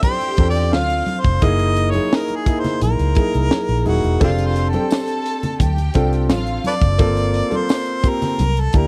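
A dry, close 1970s-style studio sound frames this cut from a longer piece of lush, smooth soul at 86 BPM in 4/4. A harmonica carries a jazz-style solo with vibrato, tongue slaps, scooped notes and a touch of tape echo over chords moving from Dm9 through Gb13 and F69 to Gm11. An intimate grand piano with audible action noise and a woody bowed string section that drops out at 6.8 s fill out the harmony, and a tight funk kit with a high-tuned snare and a round, foam-muted electric bass entering at 0.4 s sit up front, while hard-hand congas stay in the background, a very quiet metallic vibraphone rings in from 3.5 s, and a jingly tambourine adds faint color late in the passage.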